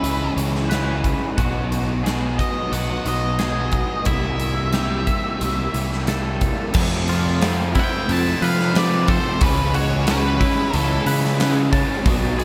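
Shoegaze-leaning dream pop rock at 90 BPM in a straight 4/4, this dreamy, blissful excerpt drifts through C#m7, B, C7 and Fmaj7 in a reverb-soaked hall, anchored by a huge, up-front arena drum kit with bright cymbals and a punchy kick, and a growling, overdriven picked bass. An octave-fuzz lead guitar carries the melody until 11.0 s, floating in diffuse ambient delay over twangy, compressed clean arpeggios touched with analog chorus, while background riffs come from a subtly chorused overdriven guitar and a crunchy guitar steeped in reverse reverb. At 6.7 s the crunchy guitar drops out and a double-tracked semi-hollow guitar with ensemble chorus takes up a riff, and the crunchy part returns briefly at 12.1 s.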